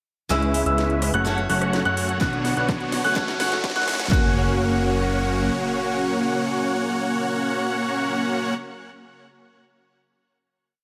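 Festival progressive house with an anthemic, euphoric lift, built around a huge, detuned supersaw riff in dotted-rhythm chords that sits up front under a filter sweep and digital delay, while a sparkling grand piano plays arpeggios high above and a fat analog bass follows the chord rhythm until 5.5 seconds. A picked steel-string acoustic guitar with audible finger squeak and a lush, chorused unison pad hold chords in the background, all of these parts pumping against the sidechain. The short piece is a build of overdriven house drums with cracking snare and metallic hats, joined at 2.0 seconds by a riser and at 2.2 seconds by a punchy four-on-the-floor kick, before everything but the drums lands on a final F# chord in a lush hall reverb.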